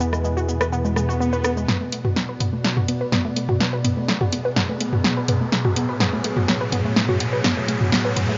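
A straight 4/4 pulse from a punchy, overdriven analog drum machine, up front with hi-hat, rim click, snare and toms, carries this cinematic, melancholic melodic techno passage, where a tight sawtooth sequencer bass and a close, grainy cabasa stop at 1.7 s as a build-up with a drum fill and a filter sweep on the pad begins, while a detuned unison pluck plays lush, warbling arpeggios through delay over a smooth, chorused analog pad, a swarming drone hovers in the background, and an electronic swell enters at 0.9 s, followed by a riser from 1.7 s.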